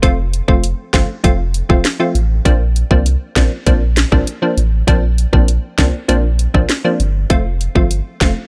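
From the first moment, an island pop drum kit with a tight kick, sharp snare, rim click and dark hats drives a sunny, summery dancehall groove at 99 BPM in 4/4, alongside a deep, punchy sine sub bass with a pitch-drop attack and crisp, detuned, wave-folded wavetable chord stabs that pump with sidechain compression as they move from F to Bbadd9 at 2.5 seconds and back to F at 7.3 seconds, all kept dry and up front in this brief cut from a longer piece.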